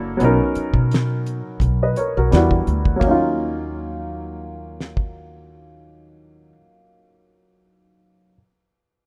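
A clear, woody upright piano with short sustain sits up front in this introspective, soulful neo-soul R&B fragment cut from a longer piece, opening with a filter sweep over its first 3.0 seconds as the chords move from Bmaj9 to Em9 and settle on Ebm9. A pizzicato upright bass with steel strings adds woody, warm, acoustic depth until 6.5 seconds, while a damped 70s drum kit plays hi-hat, kick, ride and a fat snare with a dry, dark, rolled-off top and a tight kick until 5.1 seconds. The lightly swung groove sits in small room ambience with the rough feel of a home demo mix.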